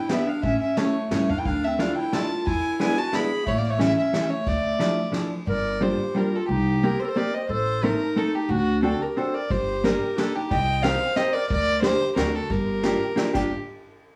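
An up-front violin carries the melody of this whirling, bittersweet musette waltz, bowed by a single player with a soft attack, an airy sul tasto tone and a pure, floating sound. Beneath it, a mellow clarinet plays a classical-style second line from a distant, roomy place, while a clean, compressed hollow-body electric archtop guitar sits close by in accompaniment. A woody, growly upright bass is plucked with a thumpy bottom, and a vintage drum kit played with brushes adds dark cymbals, a punchy kick and a medium-tuned snare with a rolled-off top. The drums drop out at 5.2 seconds, just as the music turns toward a minor-key second section, and return at 9.5 seconds. The whole band sits in a wet studio ambience, and the passage is cut from a longer piece.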